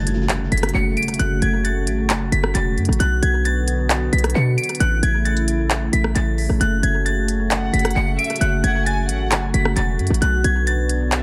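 Trap-flavored hip hop in F# minor at 133 BPM with a half-time feel, this eerie, hard-hitting cut from a longer piece moves through F#m, Bm and A over a dry, echo-heavy mix. A very quiet electronic impact opens the first second, while a punchy, heavy 808-style bass with a sine body, a noise layer and a fast, decaying attack sits up front from E1 to B2. A glassy, crystalline FM synth bell carries the melody high between F#6 and D7, treated with chorus and tape echo, above a deep, moody analog pad whose detuned sawtooth and triangle tones, sub octave and airy noise layer swell in slowly and hang on with a long release. The electronic trap kit brings crisp hi-hats, handclaps and rim clicks, also fed through tape echo. At 7.5 seconds a distant, lush studio violin section enters on a second line between E5 and G#5, bowed with vibrato, portamento and a soft, expressive attack.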